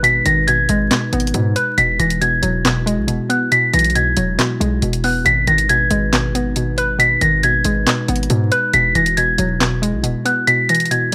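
A half-time trap groove at 138 BPM sets a melancholic, eerie hip hop mood in G# minor, with sharp snare, bright hi-hats and handclaps over a punchy, heavy 808-style bass that drops out at 10.1 s, while the kick falls silent at 10.5 s. A delicate, bell-like celesta carries the high melody, a hollow, bouncy square-wave pluck with chorus sits up front as accompaniment, and an ethereal, glassy harmonica holds pure sustained chords in the background as the harmony moves between G#m and Eadd9. The sound is dry and gritty, with vinyl crackle.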